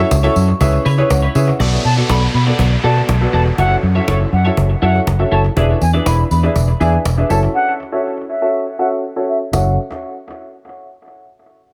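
This short dance-pop excerpt has an echo-heavy sound with light reverb and the air of a small room, and its mood is driving and bittersweet at 121 BPM in F# minor. A dark, round, foam-muted electric bass sits up front alongside a smooth grand piano, which carries the accompaniment through the chords and adds a fill between 0.6 and 1.6 seconds. A bright, twangy twelve-string electric guitar plays a clean, picked riff with chorus and delay, while a woody cajon with faint snares stays in the background and a jingly, dry tambourine appears at the start and again from 5.8 seconds. A soft, warbling FM synth bell touches the melody only briefly at the opening, before a mellow silver flute with vibrato and rolled-off highs takes over the melody from 1.8 seconds. An electronic downlifter and a filter sweep color the middle passage, and a break arrives near the end as the harmony returns to F# minor.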